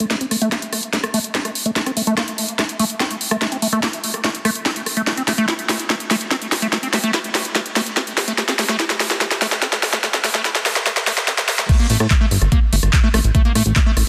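This psychedelic trance passage opens with a squelchy, resonant liquid acid bass riff, treated with chorus, cassette tape color, delay and sidechain pumping, alongside an overdriven electronic drum kit sitting up front, with a cracking snare, bright hats, handclaps, rim clicks and crash cymbal. An overdriven, knocking electronic kick, set further back and high-pass filtered, joins almost at once, and the alien, driving mood builds through a long drum fill while a filter sweep works on the acid bass. At 11.7 seconds the music drops, and at 11.9 seconds a punchy, funky analog bass with a plucky, ring-modulated tone comes in up front, low beneath the acid riff. The drums carry a layered, produced character, as if re-recorded in a small room, and a lush hall reverb surrounds the mix. The dense, heavily limited modern master keeps the short passage forceful as it cuts off mid-track.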